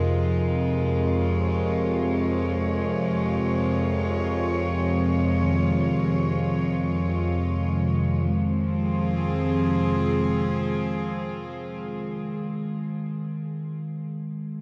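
A dark ambient drone in F minor, this ominous excerpt drifts in free time, cut from a longer piece and steeped in a huge, wet reverb that gives the dark production a long, cavernous tail. An analog drone anchors the low end from the start, its vintage sawtooth and pulse-wave tone warbling and evolving under a chorus effect with a slow attack and long release, until it stops at 11.8 seconds. Over it, a rich symphonic cello section plays sustained chords, bowed sul tasto with a soft attack for a pure, floating ensemble sound that sits up front in the mix. A bronze singing bowl, struck with a felt mallet, rings through arpeggios with a mellow, metallic shimmer and slow beating, its notes trailing through a delay. The harmony rests on Db over F before moving to F minor seventh at 8.3 seconds, where the music shifts into its second section and the bowl carries on ringing until 12.8 seconds.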